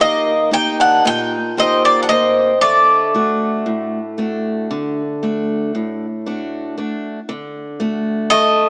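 Two Greek bouzoukis and a picked steel-string acoustic guitar start together, opening this dark, reflective fragment of Greek folk music cut from a longer piece. The lead bouzouki carries the melody high and up front, its paired, partly octave-doubled strings giving a bright, metallic ring. A second bouzouki plays a lower line further back, sharing that same doubled-string shimmer. The guitar fills out the accompaniment across a broad range with a warm, concert-style tone, set close to the front. Moving in 9/8 with a straight feel, the harmony shifts from Eb to D at 2.6 seconds, and a new section begins at 7.3 seconds. A moderate plate reverb and a small-speaker character lend the sound a boxy, reverberant quality.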